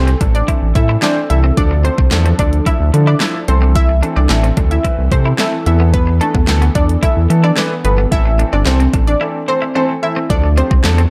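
Energetic and confident, this dance-pop excerpt moves at 110 BPM in a straight 4/4 in A minor, built around a drop with a short break from 9.2 to 10.3 seconds. The up-front pop drum kit sounds layered and overdriven, with a knocking kick, fat snare, handclaps and warm hi-hat, while a round, deep analog bass with a fast attack pumps beneath it. An analog pluck carries the melody with a bright, detuned filter-pluck tone, treated with chorus, digital delay and sidechain pumping. A concert grand piano adds intimate accompaniment with audible action noise and long sustain, and an airy, breathy pad holds very quiet chords until 10.3 seconds. In the background, a twangy, clean twelve-string electric guitar plays a riff through lush chorus, over chords that move from Am to Dm to Esus4 and back. The dark production sits in light reverb and digital ambience.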